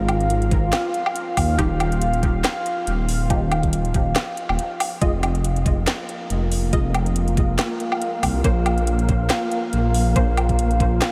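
A swung, half-time 4/4 groove from a knocking electronic kick and a garage kit of cracking snare, metallic hats, handclaps and woodblock anchors this meditative, cavernous slice of deep dubstep, pausing briefly for a break at 4.6 seconds. Up front, a rumbling, saturated detuned saw bass sits beneath a moody analog pad of slow-attack sustained chords with chorus, while a muted, filter-plucked dub chord stab drifts in the background through phaser and dub echo. From 6.0 seconds, an airy, breathy wind-like noise texture joins, and the whole mix is soaked in a dreamy, vast ambient reverb.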